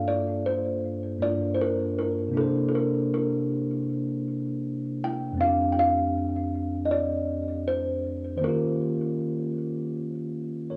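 Hip hop at 79 BPM with a light sixteenth-note swing, tuned slightly flat and hazy and reflective in mood: a bright, woody kalimba plays the melody in short thumbnail plucks through tape echo and a low-pass filter, ending at 9.9 seconds, while a clean tine electric piano, heard through its built-in speakers, carries the accompaniment up front over Gm9, C9, F6 and Eb9, all with a cassette tape character and a small-room ambience that give this fragment of a longer piece a homemade feel.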